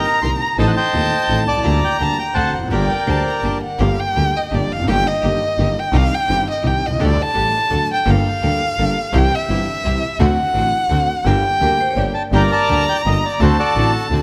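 A melancholic, tense tango in 3/4 with a rubato feel, this excerpt opens with a reedy, dark bandoneon carrying the melody over an intimate concert grand piano with audible action noise, a bowed double bass with airy bow and vibrato, and very quiet, biting chamber strings playing stabs. A close, expressive violin with portamento and soft attack holds a second line throughout, stepping forward for a solo from 3.8 to 12.3 seconds before the bandoneon returns at 12.1 seconds. A metallic, ringing vibraphone with fast motor vibrato adds brief touches in the background, all set in a moderate concert hall reverb.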